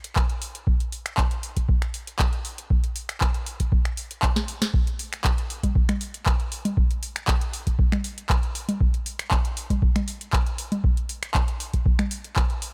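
A straight 4/4 house groove at 118 BPM opens this short, trippy and hypnotic cut from a longer piece, driven by a deep, tape-warm electronic kick drum that sits up front from 0.2 seconds onward. Around it, a booming analog drum machine lays out congas, finger snaps, handclaps, metallic hi-hats and a crisp snare, with a short room on the snare, clap and hats, and a brief drum fill at 4.4 seconds. The mix is dry, keeping both drum parts up front and present throughout.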